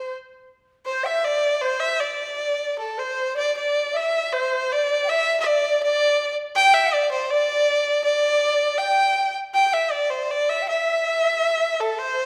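A bowed erhu, clear and earthy with a smooth top, light vibrato and portamento, sings the melody up front while a large bamboo dizi, airy and buzzing from its membrane with a crisp attack and its own vibrato, carries a distant second line in the background, giving this graceful, festive cut from a longer Chinese traditional chamber piece a rubato feel in 2/4 that moves into a new section at 3.5 seconds within a reverberant recital hall.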